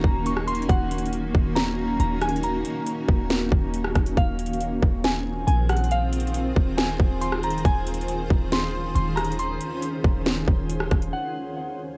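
A dry, cassette-dubbed home recording carries this hazy, ethereal slice of atmospheric cloud-rap, its half-time trap kit sitting up front with a hard-clipped kick, sharp snare and metallic hats pushed through overdrive over a deep, boomy 808-style bass. A blurred, evolving granular pad holds sustained chords moving from Ebm7 through Fm7/Eb and Dbmaj7/Eb, pumping under the drums and bathed in its own reverb. A crystalline FM bell carries the melody with a warbling, vintage character from chorus, tremolo and analog delay, while the drums and bass drop out at 11.1 seconds; the bell follows at 11.5 seconds, leaving the pad alone until 12.0 seconds.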